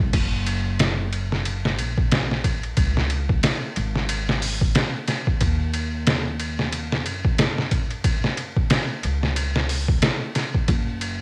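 Recorded at home onto cassette within a digital ambience, this short trip hop clip from a longer piece feels hypnotic and smoky, moving at 91 BPM in Eb minor with a swung 16th-note feel. Up front, a compressed, pitched-down sampler-style drum kit sounds gritty and tape-warm, its thumpy kick and medium-tuned snare joined by hi-hat, ride and crash in a small room reverb. Beneath it, a pizzicato upright bass on gut strings gives a woody, dark low end across the full 11.2 seconds.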